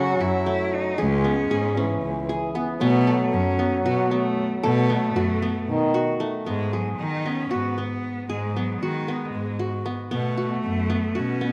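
Moving in a straight 7/8 at 230 eighth-note beats per minute, this restless, shimmering piece of contemporary chamber music opens on F#m, with a close, focused bowed cello singing the melody with vibrato. Around it, a mellow French horn with light vibrato sounds a roomy, distant second line until 6.2 s, a bright-edged plucked qanun ripples arpeggios from its triple strings, and a second, more distant bowed cello holds the bass. A new section arrives at 6.5 s on G#m7, and the ensemble sits in the moderate bloom of a scoring stage as the passage breaks off mid-piece.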